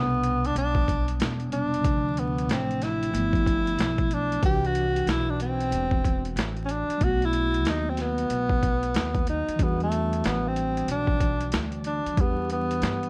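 Smoky and nocturnal, this jazz-hop cut from a longer hip hop piece moves at 93 BPM in 4/4 with a swung sixteenth-note feel, set in E minor. A breathy tenor saxophone leads up front with a dark, subtone voice, vibrato and scooped notes, its smooth top trailed by tape echo. Beneath it, a mellow tine electric piano sits clean and direct in the background, moving through a rootless Am11, Dm7, G13 and Cmaj9#11 before settling on B7 at 7.0 seconds and Em9 at 9.6 seconds. A pizzicato upright bass with gut strings adds a woody, thumpy low end. The boom bap drum kit enters at 0.2 seconds, sitting up front, compressed and overdriven, with a thumpy kick, medium-tuned snare and hi-hat, carrying vintage 12-bit sampler grit. A small room reverb and vinyl crackle wrap the mix in a dusty, late-night haze.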